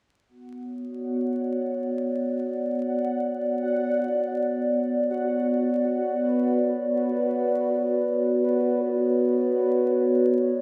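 An ambient passage in free time opens at 0.3 s with a warbly, tape-like pad holding sustained chords on B minor, its square and triangle tones rising on a slow attack and lingering on a long release. This pad sits up front, dark and nostalgic, with a lo-fi wobble thickened by chorus and its own built-in reverb. Alongside it, a bubbling stepped-filter texture enters at the same moment, its detuned sawtooth tone stepping through random resonant filter changes with a soft attack and mellow character, also treated with chorus and built-in reverb. The mood is spacious and meditative, resting on a single B minor chord for the whole fragment, which runs until 10.6 s and is cut from a longer piece. A moderate spring reverb, vinyl crackle and a dark, warm production give the sound a hazy, worn intimacy.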